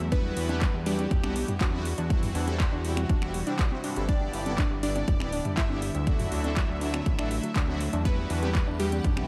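A straight 4/4 groove at 121 BPM drives this hopeful, uplifting progressive house excerpt in G major, built on a punchy, tape-warm electronic kick that sits up front, with a big-room kit of finger snaps, handclaps and metallic, sidechain-pumped hi-hats, and very quiet, overdriven electronic congas and toms entering at 0.5 s. A fat, detuned sawtooth bass with a filter sweep pumps beneath smooth supersaw stabs treated with phaser and analog delay, while a soft, round, mellow pluck arpeggiates in the background through chorus and cassette-tape coloring, and a lush, wave-folded unison pluck carries the very quiet melody alongside an airy supersaw second line. An evolving, morphing wavetable pad sustains the chords Emadd9, C/E, G6 and Dadd9 underneath, all set in a dreamy mix soaked in hall reverb.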